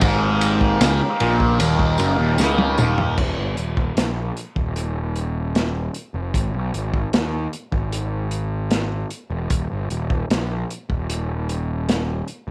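A crunchy breakbeat drum kit, small-room, saturated and gritty with dark cymbals and a tight kick, drives this trippy, hazy psychedelic rock piece in a straight 4/4 at 76 BPM, opening on Eb mixolydian with an overdriven, direct-and-amped fuzz bass, a double-tracked, compressed fuzz guitar riff with phaser, reedy, breathing harmonium chords and a jingly vintage tambourine in the background, until a drum fill from 2.4 s carries it at 3.2 s into a chordless Eb major stretch where drums and bass continue up front until 12.5 s.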